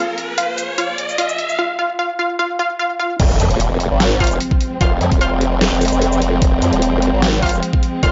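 Lightly reverberant with a rolled-off top, this aggressive, heavy half-time wobble dubstep fragment builds from a lush, detuned sawtooth unison pluck melody with delay, bowed studio strings pumping under a low-pass filter, a rising sweep and an overdriven drum kit with bright hats and a deep snare, then drops at 3.2 seconds with an impact into an up-front formant-sweep wobble bass with chorus and a knocking, distorted electronic kick, joined at 4.2 seconds by bold, ring-modulated orchestra-hit-like synth stabs.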